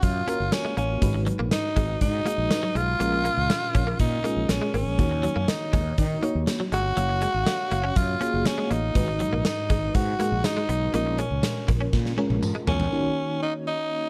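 A raspy, growling tenor saxophone carries the melody up front in this urgent, dramatic 1980s-style pop excerpt at 121 BPM in Eb minor, moving over a lush, dreamy FM electric piano with a soft pad layer treated with chorus and tremolo. Punchy gated drums in a bright stone room, a growly fretless bass, a twangy, compressed clean guitar riff with ensemble chorus and a faint, jingly tambourine drive the Gbmaj7, Abm7, Bbm7 and Ebm7 changes. A drum fill at 11.9 seconds leads to 12.9 seconds, where the bass and drums stop and the saxophone and electric piano carry on alone until 14.1 seconds.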